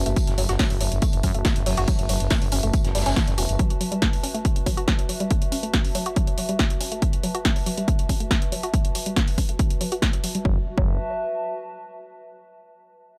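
An overdriven, heavy electronic kick sits up front in this hypnotic, industrial peak-time techno excerpt, alongside a growling, thick FM bass that pumps against it in the opening 3.6 seconds and returns briefly at 10.5 seconds. A woody, wave-folded pluck riff with chorus and tape echo and a punchy analog drum machine's hi-hats and snare carry the groove, while a filter sweep moves over a synth arpeggio sound. Beneath them sit a dark, warbly lo-fi pad and a faint vintage drum kit of rolled-off hi-hat, snare and tambourine in a small room ambience.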